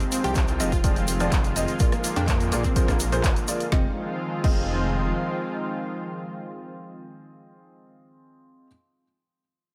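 Heard through a digital ambience, this short cut from a longer progressive house track opens on a drop at 125 BPM in a straight 4/4, its mood bittersweet and dreamy in F dorian, moving from Fm7 to Bb7 and back to Fm7. A lush unison pad holds thick, warbling sustained chords with a vintage chorus sheen, while a bright, detuned unison pluck spins arpeggios in the background, both pumping against the sidechain and the pluck trailing delay. A felt-muted upright piano, soft and intimate, adds mellow stabs from 0.2 s, echoed by delay and breathing with the same pumping. Underneath, a dark detuned saw bass rumbles with tube saturation, and a punchy electronic kick sits up front from 0.4 s beside a deep house kit of woody snare, dark hats, handclaps, rim clicks and a crash cymbal. A grainy acoustic tube shaker rides the first section, dropping out at 3.7 s, and the drums fall away at 4.6 s, the bass following at 5.1 s, leaving the pad, pluck and piano to drift on.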